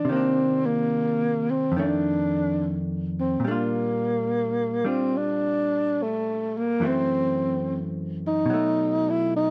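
A breathy, whispered tenor saxophone carries the melody with subtone, vibrato and scooped notes over a clean, dark, fingered hollow-body electric guitar in this tender, intimate slow jazz swing at 71 BPM, both close and up front in light reverb as the chords move from Cm9 through F6 and Bb6 to F#m7b5 and B5 in a short cut from a longer piece.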